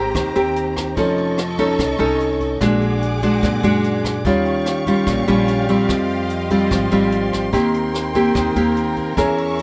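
A sunny, sophisticated bossa nova clip in a straight 4/4 feel, cut from a longer piece and lasting just under ten seconds. Up front, a full-bodied, fingerpicked nylon-string guitar carries the accompaniment through rich jazz harmony, moving from Abmaj9 through F7b13 and Bbaug7 to Eb9, Fm9 and a closing Eb6. Behind it, a lush bowed string section holds soft-attack sustained chords high above, with expressive vibrato. A woody, thumpy pizzicato upright bass anchors the low end, while a brushed jazz kit enters at 0.1 seconds with hi-hat, rim clicks and a boomy kick in a natural studio room. Light reverb gives the mix a gentle sense of space.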